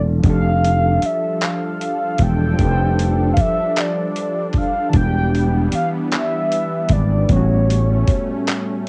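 A slow, straight six-eight groove at 51 BPM comes from a dusty, sampler-style drum kit of gritty handclaps, hi-hat and a thumpy kick, with a growly fretless electric bass sitting up front beneath it in this sultry, yearning R&B fragment cut from a longer piece. A reedy, barky electric piano with light overdrive and fast tremolo plays the accompaniment from the start, joined at 0.8 seconds by a smooth, warbling analog pad of detuned sawtooth chords with chorus, as the harmony moves from F69 to Em7 at 4.9 seconds and A13 at 7.3 seconds. Over it all floats a mellow, round horn-like synth lead with soft attack, vibrato, chorus and plate reverb, and the whole home cassette recording carries a light reverb and the colour of tape.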